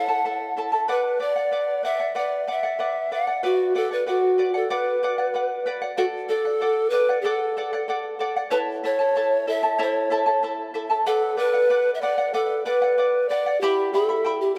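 In a straight 4/4 at 94 BPM, this earthy, melancholic Andean folk piece in B minor, cut from a longer work, sets an up-front, woody, airy pan flute melody with vibrato, a crisp chiff and a touch of delay over a bright, shimmering fingerpicked charango whose double strings are partly octave-doubled, both playing throughout the 14.6 seconds, all bathed in a dreamy plate reverb with a 3.5 s tail as the chords move from Bm through D and A to Em.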